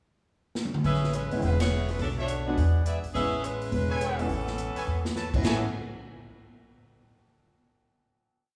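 Bathed in a reverberant recital-hall sound, this brief, brassy and joyful big band swing piece opens with a drum fill at 0.6 seconds, then a warm saxophone section carries a four-part block-voiced melody over a woody pizzicato upright bass in two-feel and drums keeping time on the hi-hat, while a bright trumpet section adds tight syncopated stabs, a clear concert grand piano comps in rootless voicings from 1.3 seconds, and a band accent lands at 1.6 seconds before the piece closes on a final chord.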